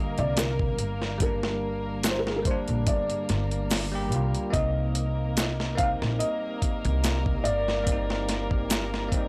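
A dry, gritty small-room recording carries this dark, hypnotic trip hop excerpt in C minor at 72 BPM, with a gently swung 16th-note feel. Overdriven sampler-style drums with a thumpy kick sit up front beside a woody pizzicato upright bass, while an egg shaker stays in the background; a felt-muted upright piano sings a mellow melody through dub echo over a bell-like tine electric piano with tremolo, 12-bit sampler grit and tape echo, as a veiled con sordino violin section holds sustained chords. The harmony moves from Gm to Cm7 at 4.5 seconds, and a breathy, wind-like tuned noise texture drifts in at 5.7 seconds.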